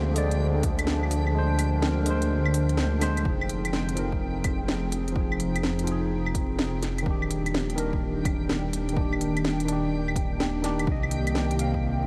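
Future garage at 126 BPM in F dorian, rainy and melancholic, with a 16th-note swing and the electric piano, pad and bass pumping under sidechain, cut from a longer piece and soaked in huge ambient reverb and vinyl crackle. A worn, slightly out-of-tune tine electric piano with delay plays accompaniment over a warbling, nostalgic tape-like pad in the background, while a menacing, saturated detuned saw bass sits up front and a reversed, granular texture glimmers high on G5. The organic electronic kit brings woody snare, crisp hats and claves, and an overdriven, punchy kick drops out from 1.3 to 3.3 seconds before the chords move from Bb7/D to Fm7, Ebmaj7 and Cm7.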